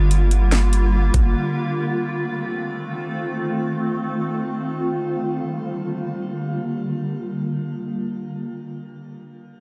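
Lightly reverberant and hazy, this fragment of an atmospheric cloud-rap hip hop piece in G minor floats in free time with an ethereal mood. A deep, mellow sine 808-style bass, a sharp, knocking electronic trap kit with metallic hats, and a barely audible, silvery guzheng plucked with fingerpicks all sound only in the opening moments, ending by 1.3 seconds. A cloudy, granular pad, bright and blurred with its own reverb, sidechain pumping and a filter sweep through 4.7 seconds, carries the sustained chords from Gm7 to F7 and back to Gm7 until 8.7 seconds.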